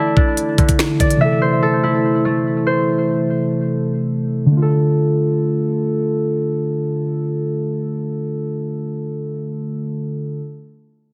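Menacing and ominous, this half-time drill excerpt in D minor moves at 144 BPM. A brief burst of electronic drums, with a knocking kick, sharp snare, crisp hi-hats and finger snaps, stops by 1.2 s, leaving a ringing, thumb-plucked concert harp arpeggiating through low-pass filtering and delay until 5.6 s. Dark, muted felt-like synth keys with chorus carry the accompaniment throughout, under light reverb and a heavily compressed radio-style sound, as the harmony moves from Dsus2 to Am and settles on Dm at 4.5 s.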